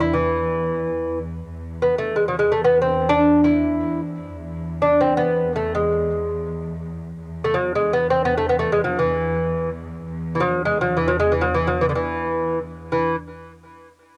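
With a light reverb and the character of a home cassette recording, this stately Persian modal ensemble fragment, cut from a longer piece, features an up-front, bright, fingerpicked lute with delicate doubled nylon strings, treated with tape echo, carrying the melody from the outset until 13.1 seconds over a distant, lush bowed cello section that sustains a focused drone on a low E with vibrato.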